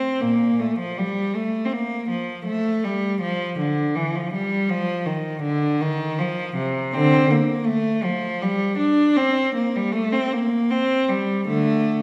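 A wet recital-hall reverb with a 1.4-second decay surrounds this church or concert-hall recording of a single unaccompanied cello, heard up front. The rich, bowed cello carries a dance-like, radiant baroque-style suite movement in Bb major at 80 BPM in 3/4, played with rubato, expressive vibrato and portamento and tuned to A4 = 444 Hz, ranging from Bb2 to D4. The 12-second passage is cut from a longer piece.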